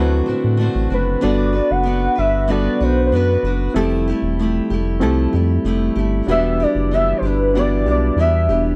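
A warbling, detuned lead with vibrato and analog chorus carries the melody from 0.9 seconds over a round, deep analog bass, fingerpicked bright steel-string acoustic guitar with subtle chorus and finger squeak, a reedy, worn electric piano with cassette-tape character, and smooth pipe organ chords in this sunny, nostalgic indie and bedroom pop excerpt in G major at 95 BPM, moving from D7 through Gmaj7 and Fmaj9 to Em7 in a dry, close 1970s-style studio sound with light reverb.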